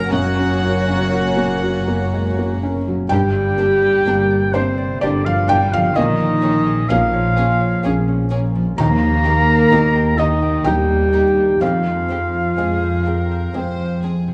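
A rubato 3/4 pulse at 63 BPM carries this sorrowful, moving cinematic film score for orchestra, where a rich chamber violin section sings the melody beside a clear solo oboe and a soft, floating symphonic violin section in the background, while a very quiet, airy flute ensemble and a distant clarinet drop out after 2.6 s, and a felt-muted upright piano with audible action noise, a very quiet, lush viola section, a tight French horn section holding sustained chords, a ringing, fingerpicked concert harp playing arpeggios, and a woody double bass section alongside a smooth-topped studio cello section on the bass all sit in a wet recital hall reverb as the chords move from Gb through Gm, Bbm7 and Eb to Fmadd9.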